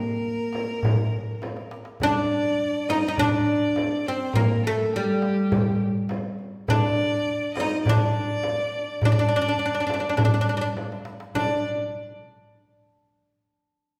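From 0.0 s, a woody, deep fretless oud plucked with a plectrum on double strings carries the melody up front, while a single bowed violin with smooth, even vibrato traces a rich second line above it in this melancholic, soulful Arabic maqam ensemble piece at 103 BPM in a straight 4/4. A crisp, close, dry metal-shell darbuka struck with hard hands and a small, bright frame drum played with soft hands fill out the percussion, with drum fills at 1.4 and 10.8 seconds. The ensemble sits in the wet reverb of a recital hall, and the passage is cut from a longer piece.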